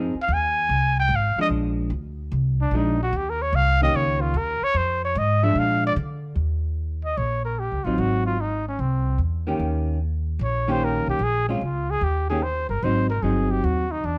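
Close, detailed and nearly dry, this sophisticated small-group swing and bop passage, cut from a longer piece, puts a mellow, smooth-topped trumpet up front with light vibrato and scooped notes as it solos through the first 6.4 seconds, backed by a woody, pizzicato upright bass and a dark, clean, picked hollow-body electric jazz guitar accompanying over changes such as Fm7, Bb7 and Ab7.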